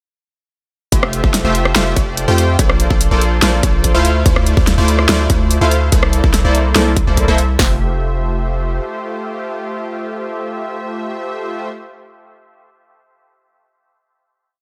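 Bright and lush, this short future bass piece drops straight into a half-time groove where an up-front, detuned supersaw stab plays dotted-rhythm chords in open voicing with dub echo and sidechain pumping, a deep sine 808-style bass follows the chord rhythm, and two layered electronic kits combine a punchy kick with a huge snare, rim clicks and bright hat rolls, before the drums drop out at about 7.7 seconds and the airy stab rings on into the final chord until 11.7 seconds.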